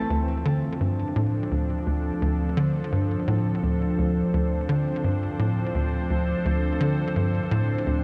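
A punchy sawtooth sequencer bass drives this hypnotic, cosmic stretch of ambient space music, its plucky filtered riff up front with analog chorus and delay over a single Dm7 chord. A detuned, warbling wavetable pad morphs slowly beside it in full-bodied sustained chords, while a ringing fingerpicked Celtic harp sounds arpeggios in the background until 2.7 seconds. The dreamy mix, cut from a longer piece, is soaked in a cathedral reverb with a six-second tail, and its highs are rolled off.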